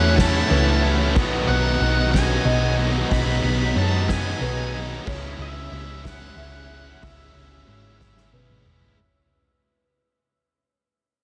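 Light reverb, a small-room ambience and a faint mains hum frame this euphoric, soaring post-rock passage in 6/8 at 61 BPM, which fades out across its full 9 seconds. A dark, fuzzed octave lead guitar with tape echo carries the melody over a bright, tight distorted riff guitar and a biting overdriven one in the background, while a round hollow-body bass sits up front and soft-mallet drums with a boomy kick roll into a fill at 8.0 seconds. A thick-felt upright piano adds mellow arpeggios with subtle chorus and tape echo, and a lush, distant string section holds very quiet sustained chords as the harmony moves from A6 to B6 and then C#m.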